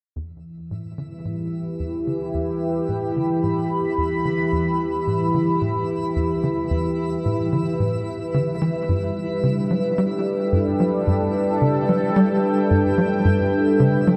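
Cosmic and hypnotic, this excerpt of ambient, sequencer-driven space music in E minor moves at 110 BPM in a straight 4/4, as a tight, punchy sequencer bass riff with a sawtooth filter pluck and lush chorus and analog delay fades in beneath a bright, detuned, evolving pad holding sustained chords through chorus and shimmer reverb, while a faint, twinkling granular texture with an octave-up shimmer fades in at 0.7 seconds, all set in an echo-heavy chamber as the harmony shifts from Em to Gadd9 at 8.9 seconds.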